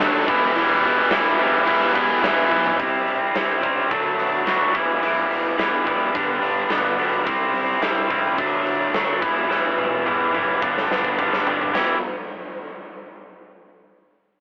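Quiet-loud alternative rock with a brooding, angsty mood, cut from a longer piece in a straight 4/4. It opens with a wall of overdriven guitars: an up-front, compressed electric riff that carries through to 12.0 seconds, joined at first by a biting, double-tracked guitar in the background, a dark, very quiet semi-hollow guitar, and a barely audible organ-like string ensemble holding mellow sustained chords. At 2.8 seconds those three drop away and a clean, twangy guitar with phaser fingers arpeggios until 7.3 seconds, as the harmony moves through C, D6, Em and G. Underneath, a fuzz-drenched fingered bass rumbles punchily in the background, while a huge arena kit with a pumping hall sound, bright cymbals and a punchy kick drives the groove, marking the changes with drum fills. The whole band sounds as if playing live in one room, heard through a telephone-like filter with moderate ambience.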